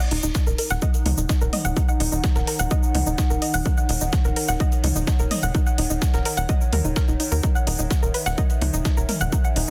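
Melancholic and dark, this melodic techno excerpt rides an overdriven, up-front electronic kick and a tight, punchy sequencer bass, with a techno drum kit of smooth hats, shaker and toms, a gritty breakbeat sampler-style kit of filtered hats and snare in the background, soft round plucked arpeggios with chorus, tape echo and sidechain pumping, a warbling, nostalgic tape-like pad, and a very quiet, nasal bowed-like drone, all pressed into a dense, heavily limited master that shifts from Ebm7 to Dbm/Eb at 7.4 seconds.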